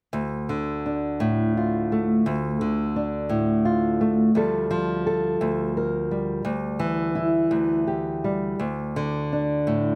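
Folk fingerstyle piece for solo nylon-string guitar, wistful and reflective, moving with a loose, rubato sway in a lilting six-eight metre. The guitar has a small, up-front presence, with fresh strings, thumb-plucked notes and a faint finger squeak. Heard close and dry, it drifts from D minor through Fadd9/D and Dsus24 before settling on an open D5 near 8.6 seconds in this brief fragment of a longer piece.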